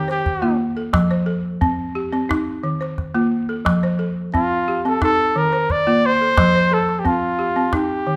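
A clear, close-miked flugelhorn with light vibrato sings a pop-style solo melody up front over a woody, buzzing balafon struck with hard rubber mallets, whose dark arpeggios follow a hypnotic sway between Eb and F in F mixolydian, while a small, dry calabash keeps percussion close in this flowing West African string and xylophone excerpt at 88 BPM, set in a moderate recital-hall reverb.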